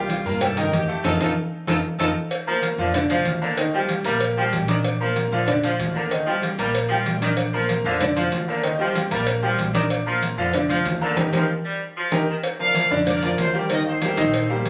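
Salsa at 190 BPM in Bb major with a sunny, danceable feel: a clear, punchy horn section states the melody until 2.1 seconds before an edgy, vintage saxophone section takes the second line from 2.5 seconds, a bright trumpet section with slapback echo carries the melody from 12.6 seconds, and throughout, a brilliant, worn concert grand piano sits up front over woody pizzicato upright bass, low-tuned congas, a tight high cowbell and very quiet ringing timbales and agogo bells, with band accents and drum fills marking the turns, all heard as a phone recording in a club room with light reverb and compression.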